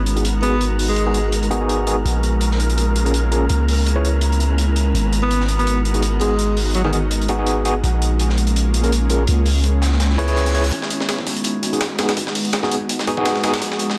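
Nostalgic and dark, this drum and bass excerpt at 166 BPM in G# minor rests on an ethereal, detuned pad and a deep, sine-like 808-style bass, with a breathy, wind-like noise texture in the background, a crunchy breakbeat kit of hi-hat and high-tuned snare with a rolled-off top, barky, overdriven tine electric piano stabs with tremolo and dub echo under a filter sweep, and brief close-miked tenor saxophone phrases with vibrato and 12-bit sampler grit, until a reverse cymbal at 10.1 s leads into a build-up at 10.7 s where a thumpy, pitched-up sampler-style kit with kick joins up front and the pad takes its own filter sweep, the whole carrying vinyl crackle and a dense, heavily limited master.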